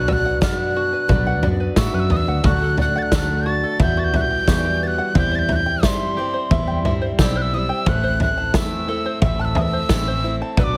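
Heavily compressed with a radio-like squeeze and light reverb, this short cut from a longer indie folk piece sounds hopeful and nostalgic, moving at 89 BPM in a straight 4/4. Up front, a breathy, mellow tin whistle carries the melody high in its register, its tongued notes showing a little chiff, gentle vibrato and rolled-off highs. Beneath it, a picked, plugged-in steel-string parlour guitar sounds bright, woody and boxy on old strings, while an open-back banjo adds twangy, plunky fingerpicked arpeggios through a tape echo, and a very quiet, clear baby grand piano fills in the accompaniment. A fingered electric bass gives a dark, round, foam-muted bottom end, and a natural country drum kit with a punchy kick, medium-tuned snare and toms sits close in a small room from 0.1 s. A jingly tambourine joins at 0.4 s, distant in a large room in the background, as the arrangement builds over chords moving from Bm through D, Emadd9 and C/E to Am.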